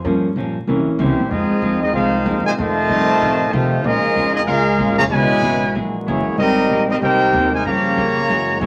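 A sultry, swinging jazz excerpt in F minor at 189 BPM, cut from a longer piece and heard through wet studio reverb with a veil of vinyl crackle. A clear, woody upright piano opens with a solo, up front with a vintage tone and short sustain, over a turnaround of Gm7b5 to C7b9 before falling away at 1.2 seconds. Beneath it, the upright bass is plucked on gut strings, dark and thumpy, while a hollow-body electric guitar adds clean, picked accompaniment in the background. At 1.0 seconds a trumpet section takes the melody, up front with light vibrato and a smooth top, joined by a trombone section carrying a second line. A second, very quiet trombone section enters at 1.3 seconds with tight sustained chords as the harmony moves from Fm7 through Bbm7, Dbm7 and Gb9 to a lush Abmaj9.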